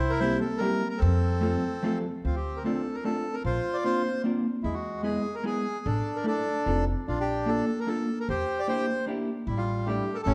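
A lilting 3/4 waltz at 149 BPM, with a light swing on the eighth notes, drives this nostalgic, bittersweet musette piece in D minor, cut from a longer performance. The reedy accordion carries the melody, close-miked, dry and full, sitting up front in the mix. Beneath it, a pizzicato upright bass with steel strings gives a woody, thumpy foundation, also placed up front. From 0.2 seconds a clean, picked electric hollow-body jazz guitar adds dark-toned accompaniment in the middle register. After a short opening passage, a new section begins at 2.2 seconds, where the harmony moves through chords such as Dm7, Bbadd9, E, Bbmaj7 and Em7b5 before resting on A7sus4. The production is dark and warm overall, set in a reverberant recital hall that lends the ensemble a soft, lingering glow.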